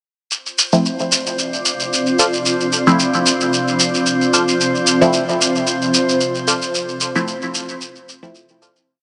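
A grainy, saturated shekere opens this short dub techno piece at 0.3 s, playing swung hand-played sixteenths up front at 112 BPM in D minor and settling into a nocturnal, deep groove on a Dm7 chord. Muted, detuned sawtooth chord stabs soon join, their filtered plucks treated with chorus, phaser and dub echo as one sparse shape moves in parallel, while a glassy texture of drifting overtones holds a calm high note with chorus and its own reverb. A cloudy granular pad rises slowly at 1.2 s and sits up front, its blurred, detuned sine chords mellow and sustained with long release. From 2.2 s a crisp, wave-folded digital stab adds bright, echoing chords far back in the mix. The whole piece sits in a huge ambient space with a long reverb tail and a dark top end, and it fades out from 6.0 s to the close.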